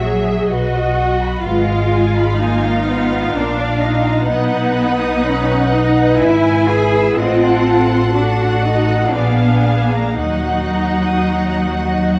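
An intense, up-front double bass section anchors this solemn, melancholic slow movement for string orchestra in Eb minor, its bowed tone carrying light vibrato, while a smooth, distant cello section shares the bass line beneath. Two lush violin sections sit further back: one sings the melody and the other traces a second line reaching higher, as a bright, focused viola section fills in the accompaniment. At 62 BPM in 3/4 with uneven, rubato beats, the harmony moves through a passage of diminished and altered chords before settling on Eb minor at 10.2 seconds, all wrapped in a dark production with moderate concert hall reverb.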